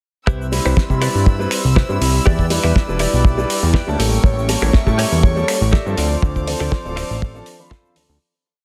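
Sunny and groovy, this short nu-disco piece in C major at 121 BPM with a light sixteenth-note swing is driven by a tight, up-front four-on-the-floor kick and a damped 70s drum kit with a fat snare, finger snaps, hi-hat and shaker on a disco backbeat, beneath a thick, detuned sawtooth analog bass playing a funky syncopated line, a clean direct-recorded electric guitar picking a compressed funk chord riff through analog chorus and delay, a dark, mellow grand piano pumping with syncopated stabs, and a reedy gut-string chamber section holding a sustained pad in the background. A soft, round octave-layered synth lead with vibrato slips in a hook at 4.2 seconds before the dense, heavily limited mix fades out from 5.6 seconds.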